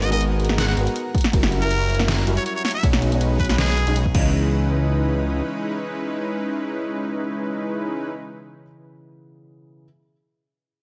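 Opening on a drop, this dreamy, bittersweet future bass at 160 BPM in half-time C# dorian sets a raspy, growling straight-muted trumpet melody with digital delay over a fat analog bass, a smooth supersaw riff also touched with delay, an airy chorused pad and a felt-muted upright piano in the background, each pumping against a dubstep kit of deep snare, hi-hat and crash that is joined at 1.1 seconds by a punchy overdriven kick. The trumpet drops out at 4.0 seconds, and once the pad and supersaw fade at 8.1 seconds the piano lingers alone until 9.9 seconds in a dry, close sound.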